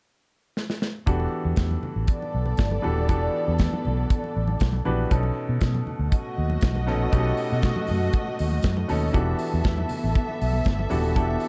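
Driving and glamorous, this disco excerpt at 119 BPM in E dorian opens with a drum fill at 0.6 seconds on an up-front, tight-kicked kit with a rolled-off top, before round, amped fingered bass, a clear, intimate baby grand piano with audible action noise, and very quiet, ringing congas played with soft hands all arrive at about 1.1 seconds. From 2.1 seconds a dark, woody string section adds a lush bowed second line with vibrato, as the harmony moves from Em11 to B9 and back to Em11 in a small room ambience.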